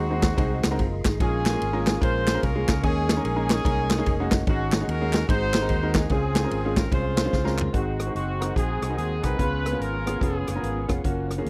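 A swung, driving feel from a punchy, up-front big-band drum kit, a round, dark fingered electric bass and crisp group handclaps carries this jubilant yet reverent uptempo gospel excerpt, with a drum fill leading into a new section at 7.7 seconds, where the handclaps stop. A tight, pop-style horn section states the melody over a woody upright piano with audible action noise and a very quiet, flute-like tonewheel organ through a slow rotary speaker. From 7.7 seconds a lush bowed string section with portamento enters softly, and a moment later a jazz-style solo trumpet with scooped notes joins the melody in a dry, close 1970s-style studio sound.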